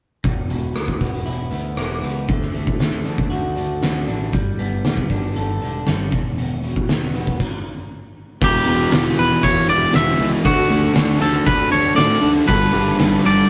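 A rough, tube-saturated rehearsal-room recording of angsty, cathartic quiet-loud alternative rock in a straight 4/4 opens with lo-fi, slightly broken-up arpeggios from an electric guitar through a small old amp, over a growling overdriven bass and an oversized low-tuned drum kit with a fat snare, punchy kick and dark cymbals in a pumping stone room; after a stop at 7.4 seconds, the band returns at 8.4 seconds with a bright, clean, twangy lead guitar melody up front, a hollow-body overdriven guitar riff, a very quiet thick fuzz guitar riff, and a veiled, con sordino string section bowing soft-attack sustained chords.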